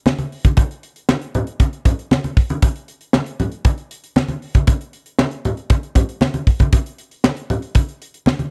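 Smooth and feel-good, this short funk excerpt at 117 BPM in a straight 4/4 pairs an airy, polished modern studio drum kit, its high-tuned snare, punchy kick and hi-hat sitting up front, with bright, damped, low-tuned congas whose thin skins sound compressed and saturated, both playing from 0.1 to 8.5 seconds in a dry, close 1970s-style small-room sound.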